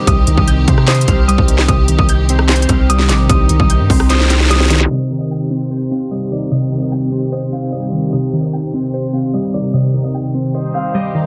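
Hard-hitting yet melancholic, this short half-time trap cut in C minor at 149 BPM sets a ringing, fingerpicked Celtic harp melody with delay over glassy, detuned digital keys with chorus and dark, woody bowed strings, while a deep sine 808 bass and a crisp, hard-clipped trap kit with handclaps and rim clicks drive the opening until a drum fill at 4.1 seconds gives way to a filter sweep from 4.9 seconds, all in a dense, heavily limited, dry mix.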